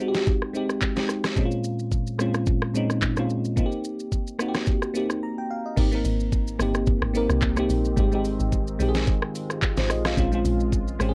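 A worn, warbling cassette sound with little reverb colors this relaxed, soulful amapiano excerpt, cut from a longer piece. A sparkling, bell-like FM electric piano with chorus and phaser plays the chords up front over a produced R&B kit of knocking kick, deep snare, metallic hats, rim click, handclaps, shaker and crash. After a short break, the drop at 5.8 s brings in a round, percussive log drum bass, and from 6.9 s a dark, moody pad with chorus and its own reverb sustains chords quietly beneath.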